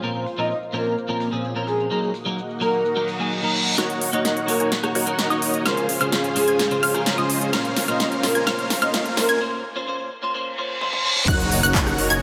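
A huge, dense supersaw riff drives this euphoric festival progressive house build in Bb minor at 128 BPM, arriving at 3.8 seconds compressed and up front with a low-pass filter sweep, sidechain pumping and digital delay. Before it, a breathy, flute-like synth lead carries the melody with soft vibrato and lush chorus over a clean, picked electric guitar and a thick, bright unison pad whose filter sweeps through the opening chords of Bbmadd9 and Ebm. A big-room dance kit with a punchy snare, crisp hats, handclaps, shaker, rim clicks, toms and crash plays throughout, filtered and fills building beneath a sweeping, punchy unison pluck arpeggio high in the register. Reverse cymbals, risers and a downlifter hover in the background through the build-up and the break from 9.4 seconds. At 11.3 seconds the impact lands on Gb6, bringing in a punchy electronic kick and a thick, detuned saw bass on Gb1, all set in a moderate, lush hall reverb in this powerful cut from a longer piece.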